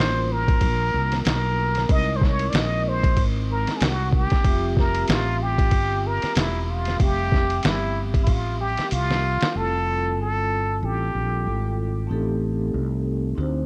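A breathy plunger-muted trumpet carries the jazz-style solo melody up front, with wah-wah colour, light vibrato, scooped notes and cassette tape echo, in this smooth, relaxed jazz-hop excerpt at 94 BPM in F major with a 16th-note swing. A metallic, airy vibraphone played with soft mallets rings out the Gm9, C7alt and Fmaj9 harmony with slow motor vibrato, while a round, dark fretless electric bass with tube saturation sits punchy and forward. A muffled, pitched-down sampler-style drum kit with a thumpy kick and fat snare enters at 0.5 seconds, plays a fill before stopping at 9.5 seconds, and the trumpet ends at 11.8 seconds, leaving vibraphone and bass over an Am7b5 in the cassette-toned home-recording ambience.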